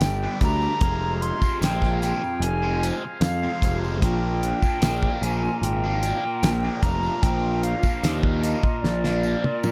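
Mysterious and hypnotic, this short psychedelic rock excerpt moves at a straight 75 BPM in 4/4, with a pure, vibrato-laden concert flute singing the melody through tape echo over background combo organ chords that buzz through spring reverb, shifting from G to Fm and then Bb. An up-front, round fuzz bass and a dry, damped 70s drum kit with a fat snare and tight kick anchor the groove, while a faint jingly tambourine sits behind them and a bright, double-tracked overdriven guitar riff enters at 0.2 seconds, coloured by phaser and tape echo. The echo-heavy mix sits in a small room, and a drum fill closes the passage from 8.8 seconds.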